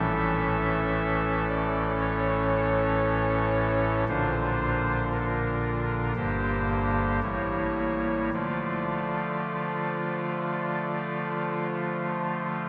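Solemn and dark, this short cut from a longer classical chorale-style piece in D minor moves at a slow, rubato 53-59 BPM in 4/4. A lone pipe organ on a soft reed oboe stop carries everything, its baroque-voiced, tremulant-tinged tone sitting up front and spanning G1 to E5. It passes from A through Bb, G minor and A7b9 to settle on D minor at 8.3 seconds, all bathed in a lingering church reverb.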